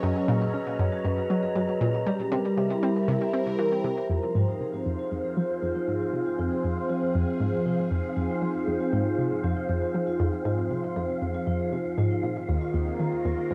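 A bright, detuned analog pluck riff sits up front alongside a swirling phased pad of sustained chords, ringing soft-mallet vibraphone arpeggios and a faint, breathy wind-like texture in this mysterious, expansive excerpt of sequencer-driven space music, with a filter sweep on the arpeggio sound opening the first 4.1 seconds before the harmony settles into F minor, all of it softened by a cassette-tape haze.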